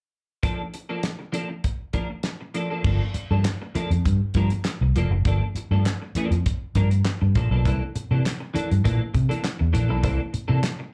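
A round, foam-muted vintage electric bass sits up front in this sly funk excerpt at 100 BPM in G dorian, entering at 2.8 s as the harmony moves from Fadd11 to Gm9 and later C13. A damped 70s drum kit with a fat snare, tight kick, dark cymbals, hi-hat, crash and handclaps keeps things dry, while a bright, twangy picked guitar adds compressed accompaniment colored by ensemble chorus and slapback echo. The whole track has the feel of a live gig heard through a club PA, carrying only a touch of room reverb.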